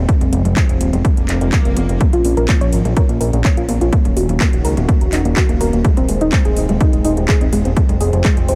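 A punchy, overdriven electronic kick sits up front in this driving, emotional progressive house excerpt at 125 BPM in Bb minor, joined by a fat, nasal analog bass that pumps against it and a house kit of handclaps and metallic hi-hats, with very quiet congas underneath. A lush, airy unison pad carries sustained chords through Fm, Bbm, Ebm7 and Abadd9/Eb with chorus, phaser and a filter sweep, while a background swell sounds between 1.2 and 2.0 seconds. At 2.0 seconds a soft, round pluck enters with dark, chorused, delayed arpeggios, all set in a digital ambience.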